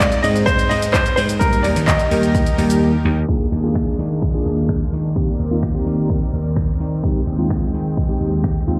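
Dance-pop with a euphoric, carefree lift, heard as a live gig through the venue's PA in a recital hall: a clear, intimate baby grand piano with audible action noise carries the melody with slapback echo and digital delay until 2.5 seconds, over a lush, airy supersaw pad, a growly, up-front vintage slap bass and a punchy, layered house drum kit of kick, hi-hat, handclaps, finger snaps, shaker and crash cymbal. A mellow tine electric piano, sounding through built-in speakers, adds pumping accompaniment alongside the sidechained pad and bass. After a brief silent gap, a filter sweep begins at 3.3 seconds as the chords shift over an Eb in the bass.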